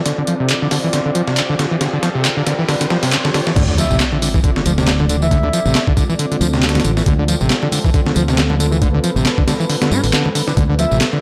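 A swung breakbeat drives this funky, playful excerpt: a compressed, sampler-style kit sits up front with a thumpy kick, medium-tuned snare, hi-hat and crash, joined almost at once by tape-warm electronic handclaps and tambourine. An overdriven acid bass riff squelches with a resonant, sawtooth filter pluck, its filter sweeping through the build-up while a drum fill and a background riser push toward the drop at 3.6 seconds. Beneath it, a deep, moody pad holds a Dm7 chord in the background, detuned and chorused, with sidechain pumping. At the drop, a round, punchy fingered electric bass enters alongside very quiet, bright bongos and congas, and an impact lands with a sub drop. A breathy, flute-like synth lead with vibrato and an old-record tint sustains a high note from 3.8 to 5.8 seconds and returns briefly at the very end, all within a dry, gritty hardware sound with light reverb.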